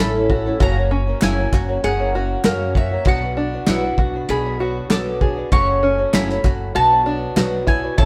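Yearning and wistful, this indie folk passage with a building arrangement moves at a straight 98 BPM in 4/4, cut from a longer piece and sounding like a band playing live in one room with moderate studio reverb. A bowl-back mandolin carries the melody with picked double strings, while a picked twelve-string acoustic guitar accompanies with a boxy, shimmering, octave-doubled tone from old strings, and an open-back banjo adds twangy, plunky fingerpicked arpeggios. A pizzicato upright bass with gut strings gives a woody, thumpy low end, and a very quiet brass ensemble holds warm sustained chords in a classical style with light vibrato. The cloth-damped drum kit enters at 0.3 seconds, sitting up front with a tight kick, dark cymbals and a rolled-off top, and a crisp, dry group handclap plays in the background from 1.2 to 7.5 seconds. The harmony moves from A to F#, then Bm, F#m and back to Bm.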